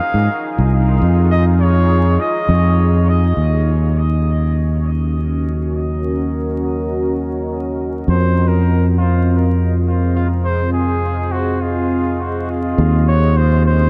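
Ambient dub at 102 BPM in Eb dorian, hazy and spacious, with a dark production under light studio reverb and a layer of vinyl crackle, cut from a longer piece. A punchy, up-front fingered electric bass carries the low end while a deep, moody detuned pad with chorus and a slow attack holds sustained chords moving between Fm7 and Ebm7. A veiled, bucket-muted trumpet with light vibrato and dub echo plays a mellow melody from the start until 3.1 seconds, then returns at 8.1 seconds.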